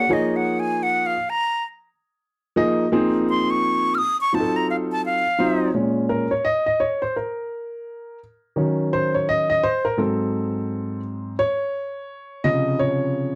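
Hip hop with a mellow, smoky mood and a swung sixteenth-note feel, opening with a breathy, close-miked silver flute singing an expressive, tongued, straight-tone melody over a woody upright piano. At 5.7 seconds the flute drops out and the piano carries on alone until 13.4 seconds, intimate and up front, its vintage character marked by audible action noise as the chords move through lush minor sevenths and altered dominants. A moderate studio reverb and a dark production give this short cut from a longer piece a smooth, late-night glow.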